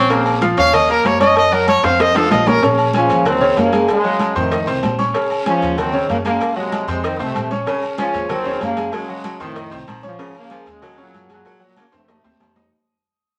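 A close-miked trumpet with light vibrato opens this fiery, danceable salsa at 190 BPM, taking a short solo over a brilliant grand piano whose action noise is audible, while a drum fill at 1.8 seconds hands off to a tight trombone section with a smooth top that carries the melody from 3.0 seconds through Bbm7, Ebm7, Gbsus2 and F7 changes. Beneath them a woody, dark pizzicato upright bass anchors the groove, and the background percussion of ringing agogo bells and timbales, damped congas, high-tuned cowbell and bongos, and a raspy guiro keeps the dance pulse churning. A punchy, forceful baritone saxophone joins quietly at 7.7 seconds, and the whole passage, cut from a longer piece, sits in moderate studio reverb with vinyl crackle as it fades out toward a closing drum fill.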